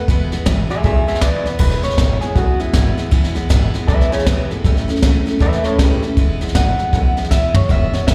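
A twangy, slightly broken-up electric guitar, carrying slapback and tape echo, takes a clean solo from 1.6 seconds in this retro, rollicking rockabilly snippet cut from a longer piece, swinging along in 4/4. Beneath it, a bright, full-bodied picked steel-string acoustic guitar with its own slapback picks out the accompaniment, while a woody, growly pizzicato upright bass thumps out the low end. An airy, up-front brush kit with a punchy kick and high-tuned snare drives the groove and adds a drum fill at 7.3 seconds, all heard as a live gig through the venue's PA with light recital-hall reverb.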